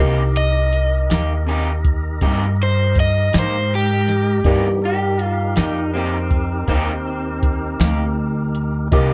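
A slow blues in 12/8 at 54 BPM, felt in dotted quarters with a straight lilt, sits in C minor on a single Cm7 chord in this short cut from a longer piece. Up front, a thumpy gut-string upright bass is plucked low, and a dry vintage rhythm box arrives at 0.7 s with a deep kick, crisp snare and metallic hats. A mellow, woody upright piano with audible action noise hangs in the background. Beside it, a slightly broken-up, lo-fi, compressed guitar through a small old amp pulses with harmonic tremolo, while a fat tonewheel organ holds chords with key click and a fast rotary speaker. From 0.4 s an overdriven semi-hollow guitar sings the hollow-bodied melody up front through plate reverb. At 4.9 s a second small-amp guitar line appears, bathed in spring reverb and digital delay, lending a brooding, soulful air to the light reverb and dark, warm production.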